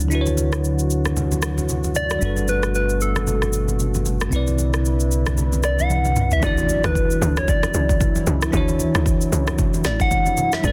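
Soulful and warm, this amapiano excerpt in D major at 114 BPM with a swung 16th-note feel sets a bell-like tine electric piano over a detuned sawtooth pad with chorus and sidechain pumping, a dark, funky plucky analog bass, low-tuned congas and an up-front afro-pop kit with a deep kick and soft-clipped woody snare; a round, keys-like FM lead with chorus, delay and vibrato enters at 2.0 seconds, and after a drum fill the drop at 6.4 seconds swaps the plucky bass for a tight, punchy FM log drum bass, with a background electronic impact, all in a dry, dense and heavily limited mix.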